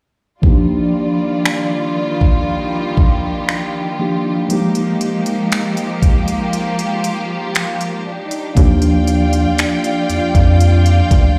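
A straight 4/4 groove of finger snaps, smooth hi-hats and a knocking kick from an up-front, tape-tinged electronic drum kit carries this tender, smooth contemporary R&B excerpt, where a mellow tine electric piano heard through its built-in speakers plays the accompaniment and a lush bowed string section with vibrato holds sustained chords. A break arrives at 6.5 seconds, and a rubbery, hollow square bass with a dark filter pluck enters at 8.6 seconds, all heard through a big sound system in a bare stone room.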